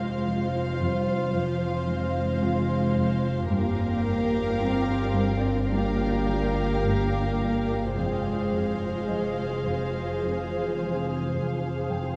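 In a straight 4/4, this ominous, eerie cinematic excerpt hangs a floating, sul tasto studio violin melody over an intimate chamber violin second line, distant viola accompaniment, a very quiet chamber cello riff and a soft, muted upright piano texture, all bowed strings with soft attacks. Underneath, a woody studio cello bass line drops out at 11.3 s while a rich, smooth-topped double bass section holds the low end. A metallic, warbling inharmonic drone with chorus and phaser and a grainy, flickering granular pad of sustained chords in the background add unease, and the whole is set in a dark production with a moderate scoring-stage reverb.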